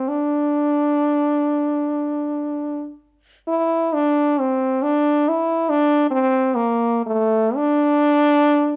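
Classical solo for unaccompanied French horn, lyrical and nostalgic in mood, moving freely with expressive rubato in a slow 6/8 at roughly 25 to 48 beats per minute in dotted quarters. The clear horn sits up front, singing with a light vibrato and a vintage, classical character across a compact range from A3 to E4. The short excerpt, cut from a longer piece, runs under nine seconds, with a first phrase giving way to a contrasting second idea at about 3.5 seconds. A moderate large-studio reverb surrounds the instrument, and the production has a dark tone with a faint mains hum in the background.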